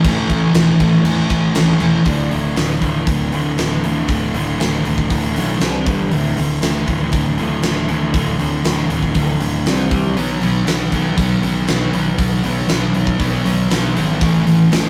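A compressed fuzz guitar riff opens this anthemic, cathartic excerpt of quiet-loud alternative rock at 119 BPM in D major, driven up front by a huge arena drum kit with a fat snare, punchy kick and bright cymbals, over a growly overdriven fingered bass, while a sludgy overdriven guitar sits in the background, drops out at 2.1 seconds as a very quiet, twangy guitar through a small old amp plays arpeggios, and returns at 10.2 seconds for a rough, saturated rehearsal-room finish.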